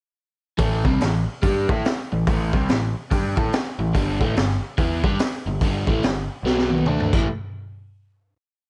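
Swaggering and driving, this short blues rock and southern rock piece swings at 143 BPM in 4/4. A crunchy, double-tracked overdriven guitar with phaser plays a power-chord riff over A5, G5, B5 and D5, while a growling picked electric bass with overdrive doubles it in a syncopated line. A raw, saturated garage drum kit with a boomy kick, high-tuned snare and gritty sampler texture drives a big rock groove up front, throwing in a fill at 6.4 seconds before the final hit at 7.3 seconds, all in a dry, cassette-tape sound.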